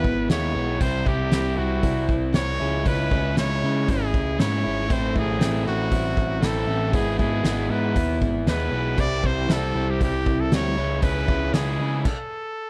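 A straight 4/4 groove from a loose acoustic drum kit, with a fat snare, punchy kick and dark cymbals in a pumping studio room, sets up this wistful yet upbeat indie rock excerpt, which moves through chords like Emaj7/G#, C, C#m7 and Am6. A crunchy, double-tracked overdriven guitar plays the riff up front over a growling picked bass with its own overdrive, while a bright trumpet carries the melody with light pop-style vibrato. The guitar and bass drop out at 12.0 seconds and the drums at 12.2 seconds, while the trumpet carries on until 12.7 seconds.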